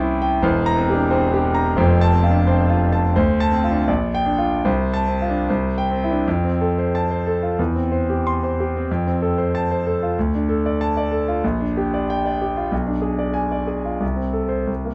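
Lyrical and warm, this short excerpt from a romantic character piece in F major features a clear, up-front concert grand piano alone, its deep bass and long sustain ringing in light reverb under a dark production, moving in rubato 2/4 at roughly 73-97 BPM through harmonies from C7/E to F before shifting into a new section at 6.3 seconds that passes through Bdim7 and closes on Am/C.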